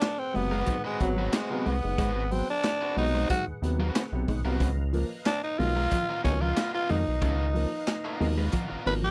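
A straight 4/4 funk groove at 92 BPM struts along on a raw garage drum kit of punchy kick, medium-tuned snare, hi-hat and handclaps, its small-room sound pumping and gritty with a rolled-off top. This short cut from a longer piece features a growling tenor saxophone soloing up front from the very start to the end, its tone raspy and breathy with a light vibrato. Beneath it, a round analog bass enters at 0.4 seconds with a deep, dark, sustained sound, while a woody, slightly detuned upright piano adds vintage stabs from 0.3 seconds. A dark, clean electric guitar played with the fingers repeats a riff in the background through spring reverb, and a bright, overdriven picked guitar supplies accompaniment from 0.5 seconds. A very quiet percussive tonewheel organ holds fat chords with key click, chorus vibrato and a slow rotary speaker, as the harmony moves from Ab7#9 to Db13 at 4.6 seconds in a dry, funky mix.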